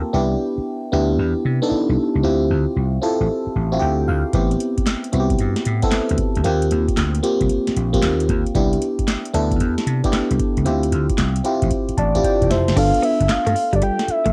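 A glassy, bell-like FM electric piano with chorus, phaser and plate reverb opens this slick, bouncy new jack swing excerpt at 114 BPM in D dorian, joined almost at once by a punchy, amped vintage slap bass over a swung 16th-note feel and chords such as Cmaj7, Dm11 and Eb69. At 4.3 seconds a booming analog drum machine enters, with a deep kick, crisp snare, handclaps, metallic hats and crash cymbal, all overdriven and gritty with cassette tape, adding its own fill alongside an electric piano fill before the change to G9. A soft, round octave-layered synth lead with vibrato and a dark, detuned edge carries the melody from 12.0 seconds, and a clean, compressed, direct-recorded electric guitar riff with analog chorus arrives at 12.8 seconds, all within a modest room on a home cassette recording.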